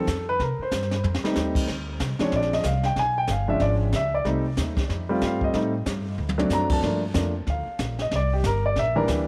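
A jazz piano trio swings at 186 BPM in 4/4 with a sophisticated, warm mood, set in F mixolydian, in this brief 9.3-second cut from a longer piece. The grand piano carries the melody as a solo throughout, its intimate, natural tone sitting up front with audible action noise and a touch of tape echo. Beneath it, the upright bass is plucked pizzicato, with a woody sound from steel strings. The brush drum kit enters at 0.1 seconds with a high-tuned snare and boomy kick, adding short fills around 1.0 and 6.2 seconds. The harmony moves through rich extended chords such as F9, Bb9, Bdim7 and Am7b5 before settling through Gm7 to C9, all in a small room with light reverb.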